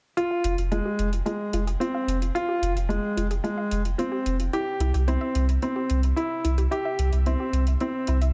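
This moving, intimate piano and strings electronica fragment in F harmonic minor at 110 BPM features an up-front concert grand piano riff with deep bass and a touch of delay, alongside a round, mellow sine sub bass under a filter sweep, detuned sawtooth unison pluck arpeggios in the background with delay and their own filter sweep, overdriven metallic electronic hi-hats, and a very quiet bowed string quartet holding smooth sustained chords with vibrato, all in light studio reverb as the harmony moves from Fmadd9 to C at 4.5 seconds.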